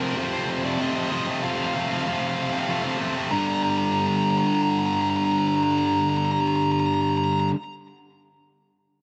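A straight-feel 3/4 pulse at 95 BPM drives this short, cinematic post-rock fragment in G minor, tuned slightly sharp at A4 = 441 Hz and cut from a longer piece. A tight, bright distorted guitar carries the riff from F2 to C4. It is picked, double-tracked and sits up front as the loudest part of the mix. Above it, a bluesy overdriven lead guitar sings a melancholic melody between Bb4 and Bb5, its picked, distorted tone trailed by a digital delay. The harmony rests on F before moving to G minor at 3.3 seconds, where the second passage begins; the lead guitar plays on until 7.5 seconds, and the riff guitar continues to 7.6 seconds. The production is dark and warm with little reverb, keeping the sound close.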